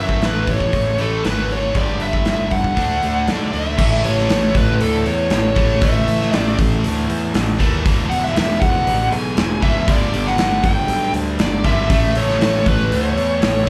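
A dark, picked bluesy lead guitar carries the distorted melody from the first moment, alongside a bright, double-tracked overdriven guitar riff and a growly fuzz bass, with a big acoustic drum kit and its punchy kick sitting up front from 0.1 s, as this confident, sunny classic rock fragment at 118 BPM in 4/4 moves from A, G5 and D into a longer passage from 3.8 s built on A, E and G, played live in one room with light reverb.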